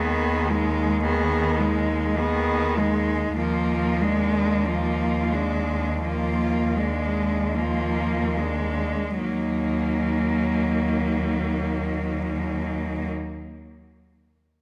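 An up-front, rich bowed cello holds a deep Eb2 bass line with expressive vibrato and portamento beneath a close, expressive melody cello that also slides between notes, while a focused second-line cello and a clear, close accompanying cello complete this elegiac, melancholic classical excerpt for cello ensemble in Eb minor, played rubato in 4/4 at 34-56 BPM, slowing through the first 9.2 seconds as Abm/Eb and Bb7/Eb give way to Ebm in a moderate scoring-stage reverb.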